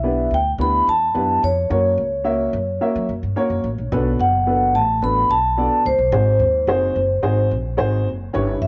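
A straight 4/4 pulse at 109 BPM drives this urgent, uptempo 1960s-style soul fragment, cut from a longer piece and running 8.7 seconds over chords moving from Em7 through F# and Bm7 to G#7. Up front, a ringing, metallic vibraphone with soft mallets and a slow motor vibrato carries the melody, while a dark, boxy upright piano with short sustain supplies accompaniment and a woody, thumpy pizzicato upright bass on steel strings anchors the low end. A moderate spring reverb with a 2.2-second decay adds space, with the top end rolled off above 10.9 kHz.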